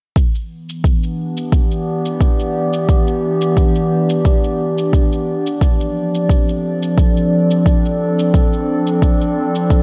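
Hypnotic and mystical, this organic downtempo excerpt moves at 88 BPM in 4/4 with a light 16th-note swing, as a deep, up-front electronic kick and a softer tape-toned shaker run from 0.2 seconds. A warbling, detuned pad with a dark, nostalgic lo-fi character enters at 0.7 seconds, its slow-attack chords breathing with sidechain pumping, chorus and built-in reverb as they move from Em7 to Dm7 at 5.6 seconds. A lush hall reverb and bright 1980s-style digital production frame the whole.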